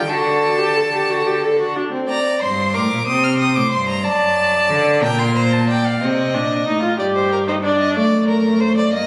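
Driving yet contemplative, this short cut from a baroque-style fugue for string quartet in 6/8 sets a clear, close first violin singing the high melody with smooth vibrato until 6.0 s over a rich second violin line, a focused, up-front cello bass, and a warm, expressive viola whose portamento drops out at 2.1 s and returns as the violin melody ends. All four are heard through a phone recording in a reverberant, club-like room with a compressed sound.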